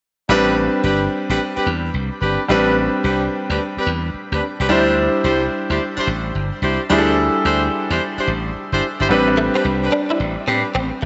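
Confident and slick, this swung R&B excerpt sets a clear grand piano's accompaniment against jazz-style horn stabs and a punchy, amped slap bass, moving from Am11 to D9sus4 at 4.7 seconds before returning to Am11 at 9.1 seconds. The piano carries shimmer reverb and slapback echo, and the warm horns add delay on top of the same treatments. At 9.3 seconds a compressed, direct-recorded clean electric guitar enters with a picked riff, bathed in ensemble chorus, shimmer reverb and slapback echo, all inside a big, wet concert-hall space with a softened top end.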